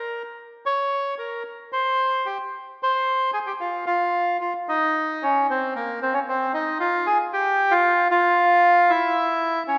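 Melancholic and dramatic, this brief tango excerpt cut from a longer piece features a solo bandoneon, reedy and vintage with a band-limited tone, set up front and moving in a rubato feel around 113 BPM in 4/4, ranging from Bb3 to Db5 across two sections that shift at 4.7 seconds, all bathed in the wet reverb of a concert hall with a 1.8-second decay.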